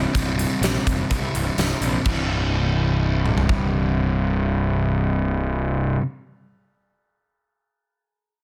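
A straight 4/4 pulse drives this short, anthemic and bittersweet slice of quiet-loud alternative rock, which shifts into a new section at 2.1 seconds over a single C chord. A punchy, fat-snared acoustic kit sits up front in a bright stone room with crash, hi-hat, toms and kick, playing from 0.1 to 3.6 seconds, while a growly, fuzz-soaked picked bass, also up front, and a sludgy, overdriven guitar riff churn in the low register. Very quietly, a dark, slightly broken-up guitar through a small old amp picks arpeggios, all inside light studio reverb and a dense, heavily limited modern master.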